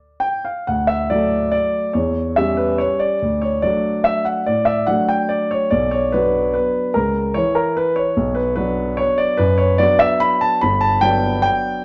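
A lilting 3/4 waltz pulse at 145 BPM, pushed and pulled by rubato so the beats fall unevenly, carries this wistful, elegant classical piece in D major, cut from a longer work. A solo grand piano with a polished, present tone sits up front, ranging from G1 to B5 and moving through D, Bm and diminished passing harmonies before settling on Gmaj7 near 10.6 seconds. Light reverb and a dark, warm production give the 11.8-second passage an intimate glow.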